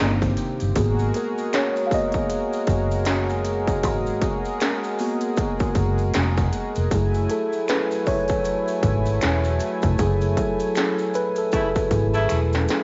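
Vinyl crackle and a dulled, echo-chamber haze frame this late-night, introspective neo-soul R&B fragment, where a mellow, clean tine electric piano carries a solo throughout over a chorused sawtooth analog pad and a round, foam-muted fingered electric bass sitting up front. An industrial drum kit adds a distorted kick, clanging snare and crisp hats with a loose swing, while distant maracas and finger snaps sit far back and a dark hollow-body jazz guitar is barely heard at the very start. A bright, vibrato-laden saxophone section stabs at the opening and again at 11.5 s before a drum fill at 12.3 s.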